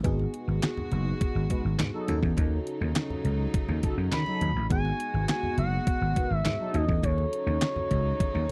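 Early-eighties boogie funk at 103 BPM in a straight 4/4, danceable and late-night in mood, this short cut from a longer piece rides a G#m7 to D#m7b5 vamp. An up-front growly slap bass and a thumpy, overdriven 8-bit drum machine with a fat snare, handclaps and toms drive the groove, while very quiet low-tuned congas, a dreamy FM electric piano with a soft pad layer, chorus and phaser, and gut-string chamber strings with light vibrato fill in beneath. Dark, detuned synth brass joins at 1.5 seconds, a smooth sawtooth synth lead with slapback echo carries the melody from 4.1 seconds, and a drum fill closes the passage in a dry, close 1970s-style studio sound.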